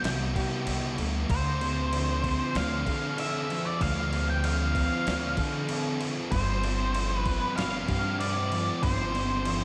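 Dreamy and blissful, this short excerpt from a longer piece drifts through shoegaze and dream pop rock at 96 BPM in a straight 4/4, soaked in a wet plate reverb that blurs the whole mix into a hazy glow. A thick, double-tracked fuzz guitar sits up front with a picked riff that spans from low G2 to A4, its distortion thickened by an analog chorus. Above it, a dark octave-fuzz lead guitar picks out a melody between C5 and G5, its distorted tone trailed by delay. Underneath, a woody pizzicato upright bass on steel strings anchors the low end. A clean 12-bit drum machine supplies a sampler-style beat with a thumpy kick, fat snare and crash cymbal, carrying a tape-like warmth. The harmony moves from Cmaj7 to Dm7 at 1.3 seconds and settles on G7sus4 at 6.3 seconds, leaving the phrase suspended in the wash of reverb.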